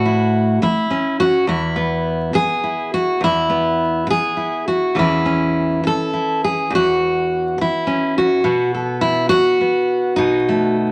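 A bright, full-bodied fingerpicked steel-string jumbo acoustic guitar opens this brief folk excerpt and carries it alone, up front in the mix, ranging from E2 to A4 over chords moving from A to E, A/E and B7. The mood is gentle and nostalgic, with a rubato 6/8 feel around 69 BPM in E major, tuned to A4 = 438 Hz. Moderate studio reverb and a layer of vinyl crackle lend the sound a softly aged quality.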